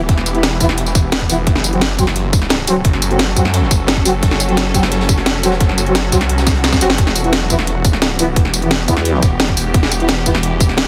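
Aggressive and mechanical, this dark technical drum and bass runs at 174 BPM in straight 4/4, built on a snarling, growling distorted saw bass and an overdriven electronic kick, with an up-front drum and bass kit of cracking snare, bright hats and tambourine, plus a very quiet, gritty breakbeat kit with a high-tuned snare tucked underneath. A swarming, warbling drone pumps with sidechain in the background while a mellow brass ensemble with light vibrato adds dub-echoed stabs over chords moving from Em to F#dim and back to Em at 7.0 seconds, following a drum fill at 6.5 seconds. A nasal, vowel-sweep wobble bass bursts in briefly at 8.9 seconds, all within a heavily compressed, radio-like sound with light reverb, cut from a longer piece.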